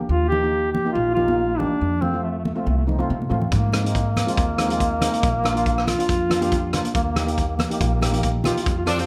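A mellow duduk carries the melody up front in this bouncy, sunny calypso excerpt, its soft attack and gentle vibrato lending a folk-style voice that still sounds distant and roomy. Beneath it, a shimmering metallic steel pan played with soft rubber sticks supplies quiet accompaniment, while a woody pizzicato upright bass with steel strings anchors the harmony through Ebadd9, F, Abadd9, Bb and Eb. High-tuned congas with a thin, bright skin patter in the background under soft hands, set in a live room. After a drum fill, a loose indie drum kit enters at 3.5 seconds with a punchy kick, rim clicks and hi-hat, warm with a rolled-off top, mid-forward and up front. The tempo sits at 140 BPM in 4/4 with a light swing on the sixteenths, and a punchy pop-style horn section comes in for a brief second line at 8.9 seconds, all under a light reverb.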